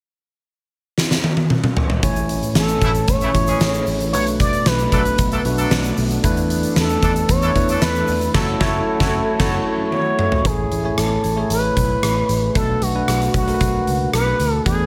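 A huge arena drum kit with a fat snare and punchy kick opens this romantic, nostalgic 1980s-style pop passage with a fill at 1.0 seconds, and at 2.0 seconds a bell-like tine electric piano with analog chorus, a round, foam-muted fingered electric bass and a very quiet, grainy egg shaker come in, soon joined by a shimmering pulse-width pad, a smooth, expressive synth lead melody with chorus and vibrato and clear horn section stabs, the whole band set in light small-room reverb.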